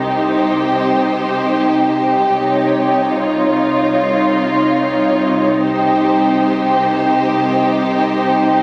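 Caught on a phone in a reverberant scoring stage, this eerie, ominous cinematic piece at 74 BPM in C phrygian holds on C minor as con sordino violins carry a veiled melody and a second line up front, muted violas add a dark inner voice on E-flat, a muted cello section in the background and lush double basses anchor the low end, a deep, rumbling, detuned drone sits in the background, and a ringing concert harp is barely audible from 1.6 to 6.9 seconds.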